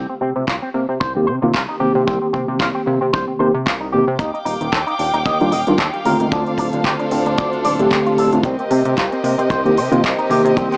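A groovy, sleek nu-disco excerpt at 113 BPM in C dorian opens with a dark, clean envelope-filtered electric guitar riff over a glossy, chorused synth bass with tube saturation and sidechain pumping. At 0.5 seconds a tight, up-front kick drum arrives with an electronic pop kit of handclaps and crisp hi-hats, both set in studio reverb and swung on the 16ths. A mellow tine electric piano joins at 1.2 seconds, sitting highest in the mix with tape echo and sidechain pumping, while the guitar carries subtle chorus and tape echo of its own. At 4.2 seconds an intimate chamber violin section enters with sustained, softly bowed sul tasto chords and light vibrato, pumping along with the bass and keys. The harmony moves from Cm7 to Ebmaj9, Dm7 and back to Cm7, all heard through a dry, gritty hardware sound with a small-speaker character and light small-room ambience.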